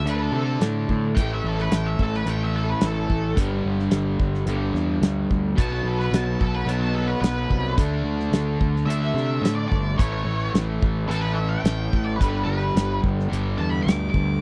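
Swaggering and driving, this 14.4-second classic rock excerpt at 109 BPM in straight 4/4 features a dark, picked octave-fuzz lead guitar soloing with wah and distortion over a bright, double-tracked overdriven semi-hollow guitar riff, a punchy fuzz-driven picked bass, and a damped 70s drum kit with a tight kick and medium-tuned snare, all captured in a dry, close 1970s-style studio sound as the chords move from D5 through A5, G5 and B5 to A and G.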